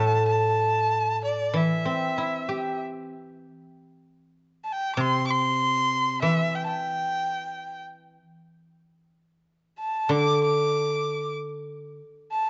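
A clear, smooth erhu carries the melody up front, its single bowed line shaped with vibrato and portamento in a free, rubato feel that sounds wistful and tender. Beside it, a guzheng played with fingerpicks gives a bright, silvery, ringing accompaniment, also up front, before falling away at 12.0 seconds as the erhu lingers to 12.5 seconds. This short Chinese traditional passage, cut from a longer piece, sits in light reverb within a dark, warm production.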